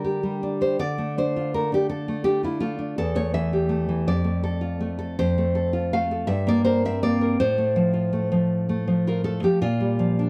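Passionate and intimate, this brief passage from a longer romantic piece for solo classical guitar moves at a rubato 54 BPM, counted in dotted quarters in 6/8. A single fingerpicked nylon-string guitar carries everything from 0.0 to 10.3 seconds, reaching from a deep low E2 up to F5 with an acoustic, warm tone that sits up front. Small finger squeaks on the strings add a close, human touch. The harmony opens in D minor, drifting through Gm/D, Dm and A5/E before settling into F major from 5.2 seconds, passing C5/G and F/A and coming to rest on a Bb6 chord. A moderate studio reverb gives the guitar a gentle sense of space around its intimate, expressive phrasing.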